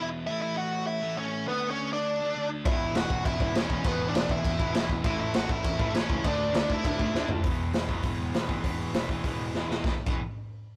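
Rowdy and upbeat, this punk rock excerpt charges along at 201 BPM in a straight 4/4, cut from a longer piece and captured as a rough rehearsal-room recording with light reverb and a saturated glow. From the opening, a dark, bluesy lead guitar sits up front with distortion and tape echo, carrying the melody until 7.3 seconds while a crunchy, picked rhythm guitar hammers out a riff beneath it. At 2.6 seconds a bright, compressed second guitar joins the riff, and moments later a growling picked bass with overdrive settles in the background alongside a raw garage drum kit. The drums come across gritty and punchy, with dark cymbals, a medium-tuned snare and a pumping small-room ambience, their top end rolled off and placed up front. The chords move through A, D5 and E5, and drum fills around 7.1 seconds and near the close push the band into a brief new section before the clip breaks off.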